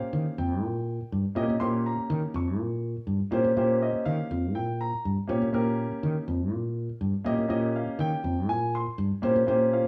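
A grand piano and a fretless electric bass start together, the piano's warm, short-sustained chords sitting up front beside the bass's dark, round and direct low line, in an intense, nocturnal stretch of electric jazz fusion in straight 4/4. The pair dwell on a single minor chord throughout, the bass falling silent at 9.8 seconds and the piano at 9.9 seconds. They play live together in one room, wrapped in a studio reverb, in what sounds like a fragment lifted from a longer piece.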